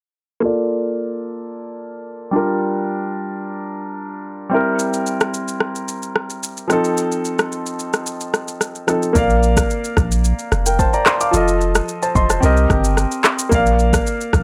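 Set in a light reverb, this breezy, romantic afrobeats fragment opens at 0.4 seconds with a clear, intimate grand piano, close enough that its action noise is audible, its long-sustaining chords moving through a filter sweep until 9.2 seconds. An electronic, produced, up-front drum kit with a deep kick, handclaps, rim click and shaker enters at 4.8 seconds. A punchy sine sub bass with a pitch-drop attack joins at 9.2 seconds as the harmony settles around Bb, F7 and Cm7.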